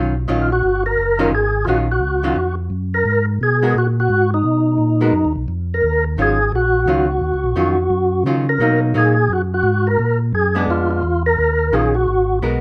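Soul jazz organ trio in Eb minor at a swinging 173 BPM, bluesy and soulful, where a fat, percussive tonewheel organ carries the melody with key click and second-harmonic percussion from 0.4 seconds, a mellow, round second organ holds down the bass with light overdrive, chorus vibrato and slow rotary speaker, and a dark, clean, picked hollow-body archtop guitar comps up front through changes from Ebm9 and Abm9 to Bmaj7 and Bb7b9, all in a moderate club reverb.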